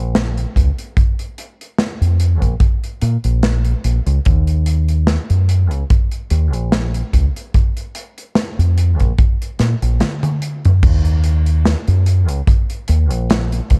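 A slow 73 BPM groove in 4/4 with a light sixteenth-note swing anchors this woozy, melancholic vaporwave fragment in Eb minor, with a punchy acoustic kick up front from 0.6 seconds and a polished, airy studio kit of crash, hi-hat, medium-tuned snare and toms also placed up front. A deep, round dub bass played with the fingers carries the low end from the very start, its dark, amped tone thickened by tube saturation. The production feels dark and cassette-tinged with little reverb, and a drum fill at 10.0 seconds leads into a new section at 10.8 seconds before the cut.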